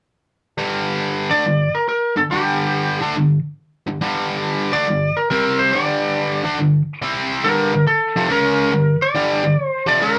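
Rock excerpt with a heavy, smoky swung feel, where a bright, double-tracked overdriven electric guitar drives a picked riff from 0.6 s while a twangy, compressed lead guitar with a slightly broken-up tone enters with the melody at 1.3 s, both up front in a live-room sound with moderate reverb as the power-chord movement shifts to a G minor chord at 7.4 s.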